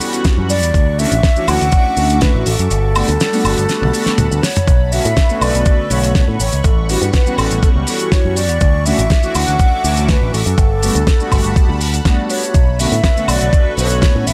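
A straight 4/4 nu-disco groove at 122 BPM rides a gritty, thumpy electronic kick set up front and a dry, damped 70s kit with a fat snare, hi-hat, shaker, toms and woodblock, while a punchy, envelope-filtered picked bass sits forward; the kick drops out from 2.7 to 4.7 seconds as a drum fill begins at 3.7. Over a cycling progression in B minor from A13 through Dmaj9, Gmaj9 and Bm9, a breathy, hollow, close-miked concert flute carries the melody with analog delay, backed by round, detuned synth brass with chorus, phaser and slapback echo. A lush, thick unison pad pumps with sidechain beneath it all in a small room ambience, giving this cosmic, sleek excerpt its bright bed.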